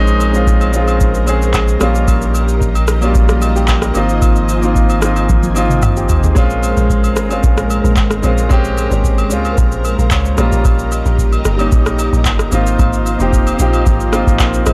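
A booming analog drum machine with a deep, tape-colored kick drives this hypnotic, deep amapiano excerpt at 112 BPM in Bb dorian, its handclaps, rim clicks, shaker and toms up front, with a fill arriving just before a dark, percussive FM log drum bass replaces the round, sustained analog bass at 6.4 seconds. A warm, intimate concert grand piano with audible action noise and long sustain plays polished accompaniment over Bbm9, Eb7/Bb and Ab6, adding a brief fill at 9.8 seconds, while a mellow, vintage string machine cello part holds sidechain-pumped chords with ensemble chorus in the background. Close, dry agogo bells and woodblock sit quietly behind in a dark production with little reverb.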